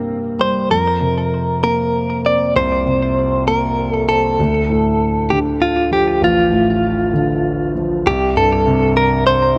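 A bright, compressed clean electric guitar, recorded direct, carries the melody from 0.4 s with tremolo and digital delay over an intimate grand piano whose long sustain and audible action noise fill out the accompaniment, in a swaying, heartfelt pop fragment in 6/8 at 65 BPM that moves through Fsus4 and Dm before landing on C5 at 8.1 s, all set in light reverb with a dark production.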